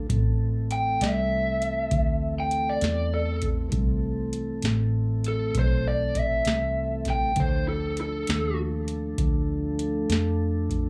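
An overdriven lead guitar, played through a small cranked amp and set up front with plate reverb, carries the melody from 0.7 to 8.6 seconds in this mournful, brooding slow blues excerpt in A minor. The tempo sits at 66 BPM in a straight 12/8, with the harmony resting on Am before moving to Dm at 7.4 seconds. A booming analog drum machine, tape-warm and close, supplies a deep kick, a tonal snare and metallic hats. Underneath, a vintage muted fingered electric bass adds a dark, round, foam-muted low end. A soft, flute-like tonewheel organ holds sustained chords with a touch of key click, turning through a slow rotary speaker, while a moderate club reverb gives the whole piece a small-room ambience.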